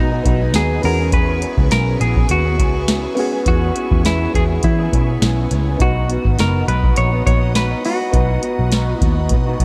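A foam-muted vintage electric bass, dark and round, sits up front in this hazy, dreamy indie and bedroom pop excerpt in B major, moving at 103 BPM in 4/4 with a light sixteenth-note swing. A soft vintage rhythm box joins at 0.3 seconds with a deep kick, crisp snare and metallic hi-hats, equally prominent beside the bass. The melody comes from a clean semi-hollow electric guitar, fingered and compressed, bathed in lush chorus and delay. Beneath it, a second electric guitar through a small old amp plays a slightly broken-up, lo-fi accompaniment with ensemble chorus and a warbly pitch drift, while a woody, slightly detuned upright piano with a cassette-tape character rests in the background. A string machine set to cellos adds mellow sawtooth chords with a sub octave and slow attack, treated with phaser and ensemble chorus, as the harmony moves from B to E6 at 0.8 seconds and returns to B at 5.8 seconds, all under a light reverb.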